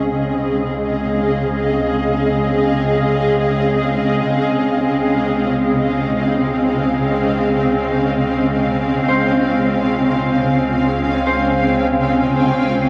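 A blurred, detuned granular cloud pad sits up front in this weightless ambient passage, holding sustained chords over a bright, string-like drone and a woody, bowed double bass section that fades in beneath, until a ringing concert harp with tape echo enters with arpeggios at 9.1 seconds, all bathed in a cathedral-sized reverb and a worn, warbling cassette-tape pitch drift.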